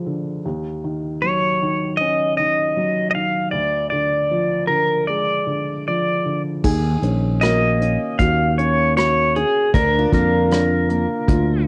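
Acoustic folk-pop ballad, heartbroken and intimate, cut from a longer piece and captured as a home cassette recording with light reverb. A soft, mellow felt-muted upright piano opens at 0.0 seconds over Ebm7 and Ddim, and at 1.2 seconds a bright, twangy pedal steel guitar takes the melody up front, played with fingerpicks, slide and volume swells, its tone compressed and clean. At 6.6 seconds the second pass brings in picked steel-string acoustic guitar arpeggios, a dark, round fretless electric bass sitting up front, and a soft brush drum kit with a tight kick, hi-hat, rim click and crash cymbal; every part except the bass carries a cassette tape colour.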